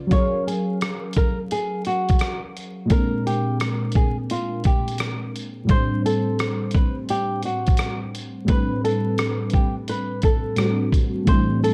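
A gritty, compressed sampler-style drum kit sits up front with a thumpy kick, hi-hat and rim click, giving this melancholic, reflective lo-fi hip hop fragment its swung pulse. Round, detuned analog keys with chorus, cassette tape colour and a low-pass filter carry the F#maj9, Bb9 and Am11 accompaniment from 0.0 seconds. A fingerpicked acoustic flamenco guitar, also low-passed, plays the melody in a narrow range from 0.1 seconds, all framed by a modest small-room reverb and vinyl crackle.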